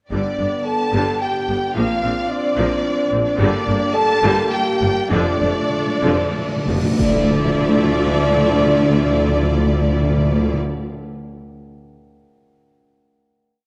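Dark and epic, this short cinematic orchestral cue in 3/4 carries its theme on bright, close violins doubled at the octave by a distant, shadowy second violin line and subdued trumpet stabs, over clear violas driving an ostinato and a faint sustained string pad. Mellow French horns and warm trombones hold chords while rich cellos, double basses and tuba carry the bass. The music begins to slow at 2.6 seconds, timpani roll in at 5.1 seconds, and a huge cymbal swell gives way to a low impact on the final chord at 7.0 seconds. A wet scoring-stage reverb and worn, warbling old-tape pitch drift colour the whole sound.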